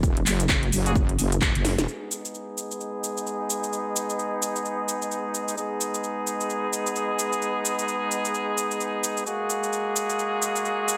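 A swung 4/4 groove drives this bouncy, aggressive bass house excerpt: a punchy, layered electronic kick and a house kit of cracking snare, metallic hi-hats, handclaps and shaker open it, while a heavy, detuned, saturated wobble bass pumps beneath them. The kick drops out at 1.5 seconds, just after a band accent, and the bass follows at 1.9 seconds, after a drum fill, leaving the up-front kit and horns to carry on in a moderate plate reverb. A clear, vintage horn section in octave doubling enters at 0.9 seconds with vibrato-laden, pumping stabs through delay, and once G# minor arrives it rides a filter sweep through to the end, with a shift to F#add9 near the close.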